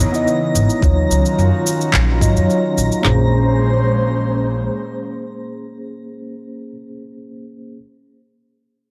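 A dark, growly pizzicato upright bass with tube saturation sits up front in this wistful, smooth sunset chillout excerpt at 108 BPM in Bb minor, with a filter sweep on it over the first 3.0 seconds as the chords move through Dbm9, Ebm9 and Bbm9. A mellow tine electric piano with low-pass filter and delay plays accompaniment until 7.8 s over an airy, breathy, detuned pad with chorus, a sparkling granular texture with octave-up shimmer, and tape-warm electronic shaker and handclaps. From 0.8 s a produced R&B drum kit adds a knocking kick, woody snare and toms, and the piece sits in a lush hall reverb.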